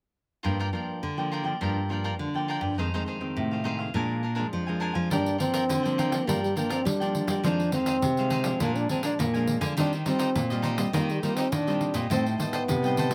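A breathy, mellow trombone with light vibrato and scooped notes enters at 5.1 s alongside a jingly pandeiro, carrying a yearning, lively jazz-style melody over a samba and choro groove at 103 BPM in G minor. A bright, crisp picked cavaquinho and two warm, fingerpicked nylon-string guitars with audible finger squeak, one of them full-bodied and deep, supply the accompaniment and bass line in a close, detailed recording with light reverb.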